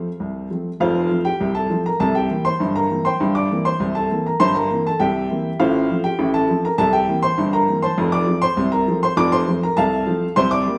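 This jaunty, lively ragtime piano piece moves at 100 BPM in a straight 2/4, set in F major and tuned slightly flat to A4 = 437 Hz. A single upright piano carries the whole performance from 0.0 to 10.8 seconds, spanning F1 up to D6. Its tone is dark, woody and boxy, with long sustain and audible action noise that gives it an intimate, up-front presence. The harmony runs from F through C7 and C7/G to F/A, then back to C7 before settling on F at 8.0 seconds. A wet, large studio reverb adds a live-in-the-room feel to this short cut from a longer piece.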